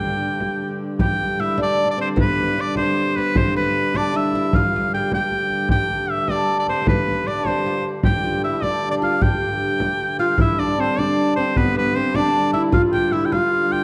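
Bathed in the long, wet reverb of a recital hall and given a dark overall production, this rustic, ancient-sounding medieval dance in G mixolydian moves at 102 BPM in a straight 6/8, cut from a longer piece. A bright shawm with light vibrato carries the folk-style melody up front over a woody, wheel-bowed hurdy-gurdy drone and the deep, soft-handed pulse of a large frame drum. A fretless, plectrum-plucked oud with double strings adds a second line from 1.0 s, and at 10.2 s a smooth-topped clarinet in classical style joins with its own second line as the dance moves into a new section.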